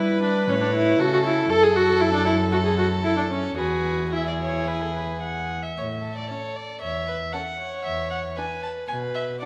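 A quick classical-period movement for string quartet, graceful and lively with a rubato feel and cut from a longer piece, in which a dark, distant first violin carries the melody over a second violin's lightly vibrato line, while an up-front viola with a smooth top fills in the accompaniment and a close, nasal cello holds the bass, all four bowed in period style with a reedy gut-string tone and set in a reverberant recital hall, with audible lossy compression artefacts.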